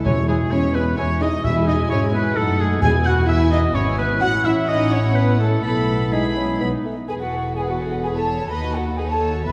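A quick classical-period movement for symphony orchestra in E major, spirited and lively, moving at 128 BPM in 3/4 with a rubato feel, cut from a longer piece. A warm violin section carries the melody with a floating, smooth top, while a rich, distant second violin section, an airy flute section and a clear solo oboe with light vibrato add second lines. A viola section sits in the background as accompaniment, and a dark, intimate cello section joins an up-front double bass section on the bass, the strings all bowed sul tasto. A French horn section holds sustained chords until 6.8 s, round timpani struck with soft mallets mark the opening until 3.5 s, and a mellow solo bassoon appears briefly at 6.1 s. The harmony moves from C#m/E through E and F#m7/A to a B chord before the second section at 7.1 s, which returns to E and ends on B9/D#, all set in a wet concert hall with a dark production.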